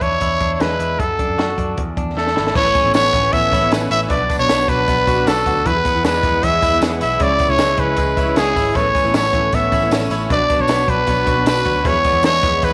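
A growling trumpet leads this bright, youthful stretch of jangly indie pop at 155 BPM in A major, sitting up front with a raspy, gritty tone, light vibrato and a slapback echo as it carries the melody. Under it from the start, a clean, direct-recorded electric guitar plays compressed arpeggios with its own slapback echo, while a foam-muted vintage bass gives a round, dark low end and a compact cocktail drum kit adds a punchy kick, a high-tuned snare, hi-hat and crash with a rolled-off top. A drum fill at 2.2 seconds leads into a new section at 2.6 seconds, where the chords move from E7, D/F# and E7sus4 to a cycle of Aadd9, Bm, E and C#m. From 2.5 seconds, a picked, full-bodied jumbo acoustic guitar with audible finger squeak and detuned sawtooth analog keys with chorus and a filter sweep fill in the background. A jingly, saturated tambourine joins just after, and the whole sits in light reverb with a small-room ambience, the excerpt being cut from a longer piece.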